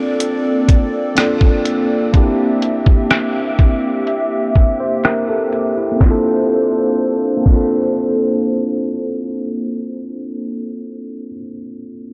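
Drenched in huge ambient reverb and softened by a low-pass filter, with a filter sweep over the first 6 seconds, this dreamy contemporary R&B fragment feels tender and smooth, moving from Bbmaj9 to C7 and back. A mellow, clean tine electric piano carries the accompaniment through its own built-in speakers, while a hollow, flute-like pad with a slow attack and chorus holds dark, sustained chords until 10.6 seconds. Up front, a detuned 8-bit drum machine plays crash, hi-hat, thumpy kick, rim click and snare from 0.2 to 7.7 seconds, its sampler-style sound re-recorded in a small room.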